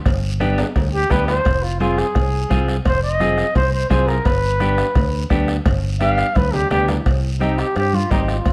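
Driving and danceable, this cumbia excerpt moves at 171 BPM in a straight 4/4, set in C harmonic minor. A soft-beater bombo heard in a small room and a round, up-front fingered electric bass anchor the groove. Raspy, close guiro, ringing congas kept dry in the background, and vintage, band-limited cowbell and timbales fill out the percussion, with drum fills arriving around 0.6 and 6.0 seconds. A dark, clean picked electric guitar supplies accompaniment as the harmony moves from G to Fm and back to G. The breathy trumpet enters at 0.9 seconds for an intimate, whispered solo with light vibrato and a soft attack, distant and roomy yet sitting up front. At 7.1 seconds the music shifts to a new section on Cm, all under a light reverb.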